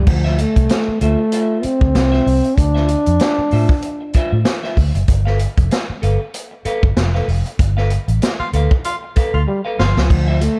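A dark, dry production frames this hypnotic funk excerpt in D dorian, moving at 96 BPM in 4/4 with a light sixteenth-note swing over Dm9 and then G9. A breathy, smooth-topped trombone carries the melody up front with light vibrato in a jazz style, sitting out in the middle and returning at 9.5 seconds. Beneath it, a vintage muted fingered electric bass gives a round, amped, foam-muted low end, while a swinging big-band drum kit sounds distant and roomy, with dark cymbals, a punchy kick and a medium-tuned snare. A clean, picked semi-hollow electric guitar adds quiet accompaniment bathed in spring reverb. Near the close, a clear tenor saxophone enters at 8.4 seconds with scooped notes as a second line, arriving during a band accent that ends in a drum fill.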